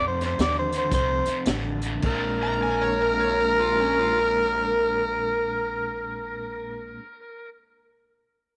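Soulful and swaggering, this short cut from an electric blues shuffle in Bb mixolydian swings at 102-119 BPM, slowing over its first 2 seconds, as a raspy, breathy tenor saxophone growls the melody up front over a crunchy overdriven guitar riff with harmonic tremolo, a woody pizzicato upright bass and a saturated breakbeat kit with a punchy kick and high-tuned snare that plays only until 2.2 seconds, before a bright slide guitar enters at 2.4 seconds with a second line, set in a small room with light reverb.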